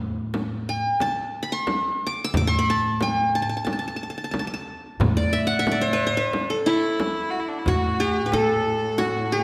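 A straight 4/4 pulse at 90 BPM comes from a very quiet clay-shell darbuka and a deep frame drum, both struck with hard hands and close and dry, over a woody, dark pizzicato upright bass holding A2 in this stately Arabic ensemble piece in A maqam rast. Up front, a plectrum-plucked qanun with a bright-edged, triple-string sparkle carries the melody from E4 to E6. A nasal, earthy solo violin with light vibrato adds a second line from 6.7 s, and a lush, smooth symphonic cello section sustains an A2 drone from 7.7 s, all bathed in the long reverb of a church or concert hall in this passage cut from a longer work.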